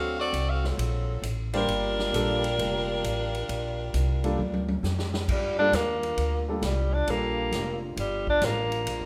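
Moderate recital-hall reverb frames this brassy, sultry big band swing, cut from a longer piece, which opens with a tight, present saxophone section carrying the melody over warm grand piano, woody pizzicato upright bass and a punchy, natural-sounding drum kit. After a drum fill beginning at 4.4 seconds, a tenor saxophone takes a solo at 5.3 seconds, its scooped notes and light vibrato giving it a vintage jazz flavour. Meanwhile, a close-miked trombone section holds sustained chords in the background.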